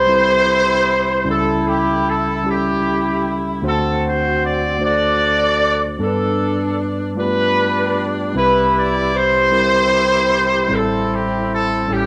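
A horn section and a tine electric piano begin together in this short, uplifting gospel fragment, its unhurried, straight 6/8 pulse carrying a hopeful mood. The horns take the melody, moving between C4 and D5 with a roomy, distant quality, pop-style vibrato and a warm ensemble blend, sitting up front in the mix. Beneath them, the electric piano supplies mellow, clean accompaniment across a broad span from A1 to B5, its tone direct and close. The harmony moves from Cmaj7 through A7/C# and D7 to G, then returns to Cmaj7 before settling on Am7 near 10.7 seconds. Both parts carry the soft grain of a home cassette recording, bathed in a moderate spring reverb, and the passage breaks off at 12.1 seconds as if lifted from a longer piece.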